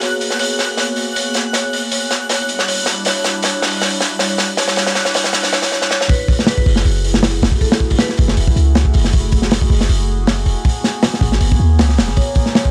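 A crunchy breakbeat kit drives this frenetic, nostalgic drum and bass and jungle cut at 158 BPM in 4/4, its hi-hat, kick and snare swinging lightly on the sixteenths and sitting up front with a saturated, rolled-off top, a tight kick and a medium-tuned snare inside a small room. The opening build-up runs through drum fills until the drop lands at 6.1 seconds, where the chords move from G#m9 and Em9 to F#m9 and back to G#m9. A warbling, detuned tape-like pad holds sustained chords across the whole cut, softened by chorus, phaser and its own reverb into a mellow, lo-fi haze. In the background, a marimba struck with medium hard mallets plays a short melody with vintage 12-bit sampler grit and dub echo, while a twinkling granular texture with an octave-up shimmer sparkles high above until 5.7 seconds. A deep, boomy 808-style bass with a sine tone, a noise layer and a fast, decaying attack enters at 6.7 seconds, and the whole excerpt carries the dry, gritty feel of a hardware recording dusted with vinyl crackle.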